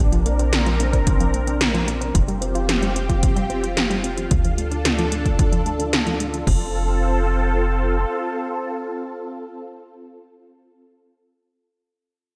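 A silky, string-like analog pad sits up front with ensemble chorus and sidechain pumping, carrying sustained chords through this uplifting, nostalgic synthwave fragment in a lush hall that gives it a big arena sound. Beneath it a round sawtooth pluck spins arpeggios through chorus, delay and slapback echo, while a tight, punchy sequencer bass drives along, both parts under a filter sweep, joined by a punchy kick and tape-warm 80s drums with a gated snare and metallic hats. The drums and pluck drop out around 6.6 seconds and the bass by 8.1 seconds, leaving the pad to hold alone until 10.9 seconds.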